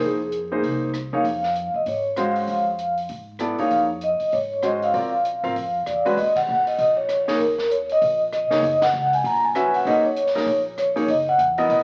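A smooth, up-front grand piano with a deep, vintage low end, woody pizzicato upright bass and a compact, dry cocktail kit with dark cymbals, a high-tuned snare and a punchy kick open this cool, spiritual modal jazz fragment at a swinging 195 BPM, joined almost at once by a mellow, ringing vibraphone melody with medium motor vibrato, while the band hits accents at 6.3 and 8.8 seconds as the harmony moves into Eb phrygian, the sound wrapped in a large studio reverb and the crackle of a very old 78 rpm record.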